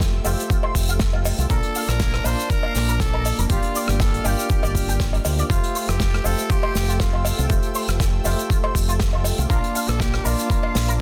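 Nu-disco at 120 BPM in F major with a light 16th-note swing, sunny and feel-good, cut from a longer piece as chords move from Fmaj9 through Bbmaj7 and Gm7. An overdriven, thumpy electronic kick and an up-front, envelope-filtered fingered bass anchor an airy acoustic kit played with bundle sticks and a background cowbell, while a tine electric piano and an earthy chamber string section pump under sidechain and a clean, twangy guitar riff with an envelope filter, chorus and tape echo sits behind them. At 1.5 seconds a raspy, gritty tenor saxophone with vibrato and tape echo takes the melody, all in a small, lightly reverberant room with a dense, heavily limited master.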